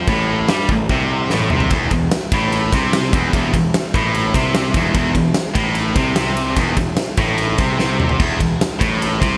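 Heavy and relentless, this short heavy metal cut from a longer piece drives at 148 BPM in a straight 4/4, pairing a tight, double-tracked distorted guitar riff up front with a growly, fuzz-laden picked electric bass and a big acoustic rock drum kit with a fat snare and tight kick in a bright stone room, moving from an A5 chord to Am/E at 1.7 seconds, with drum fills marking that shift and again at 7.8 seconds, all framed by light reverb and a bright 1980s-style digital production.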